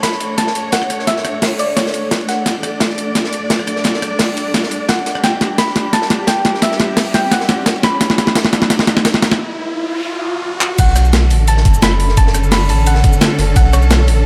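A light small-room ambience frames this melancholic, dreamy liquid drum and bass excerpt, where a soft, round pluck with chorus and delay carries the melody over lush, bowed symphonic strings that pump under sidechain and a deep, sine-like sub bass up front. Gritty, overdriven sampler-style breakbeats with handclaps, cabasa and rim clicks sit forward, backed by a dark, rolled-off acoustic break and a thumpy electronic kick, as chords move from Bm9 to Em7. A background riser builds from 1.6 s into a brief break at 9.4 s, where a noise sweep joins, and the drop lands at 10.8 s back on Bm9.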